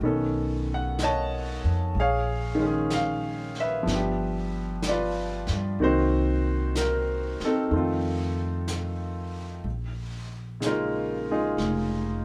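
A bright baby grand piano accompanies this wistful, intimate jazz ballad, its brilliant tone sitting up front with long sustain and the natural sound of the action audible beneath the chords. The tempo is a slow 62 BPM in 4/4, with a gentle swing on the eighth notes, and the piano plays from the opening through 12.2 seconds. A pizzicato upright bass with steel strings anchors the low end, its woody tone close and present. A vintage brush drum kit sits mid-forward in the mix, playing brushed snare and hi-hat with a warm, rolled-off top and a medium-tuned snare that suggests a small room. The harmony moves through B9, Bbm7, G7, Cm7b5 and F7 before returning to Bbm7 as a new section begins at 9.7 seconds, all heard as a trio playing live together under light reverb in this brief cut from a longer piece.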